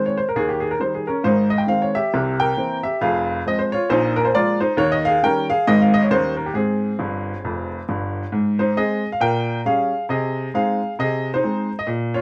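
Swinging eighths at 135 BPM in 4/4 drive this playful stride-piano jazz cut in Ab major, where a solo upright piano, woody and intimate with audible action noise and placed up front, moves through a run of changes from Eb to Ab, C7 and Fm, plays a fill from 7.0 to 8.3 s, then turns to a second section colored by a Gdim/Bb chord before the clip breaks off at 12.2 s, all in a wet, short studio reverb that feels recorded live in a single room.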